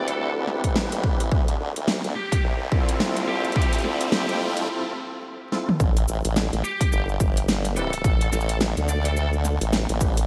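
A swung 16th-note groove at 107 BPM in 4/4 drives this funky, gritty glitch hop excerpt in A minor, where a dark, high-gain lead guitar carries the melody with delay over key-clicking tonewheel organ stabs on fast rotary speaker with sampler grit and sidechain pumping, a sawtooth-and-sine formant wobble bass sits up front, a background riser sounds from 1.3 s to 4.7 s in the build-up, a dubstep kit with huge snare and metallic hats is joined by a punchy electronic kick, and after a brief break and drum fill the drop lands at 5.8 s back on Am7, the whole mix carrying a bright 1980s-style digital sheen, lush hall reverb and vinyl crackle.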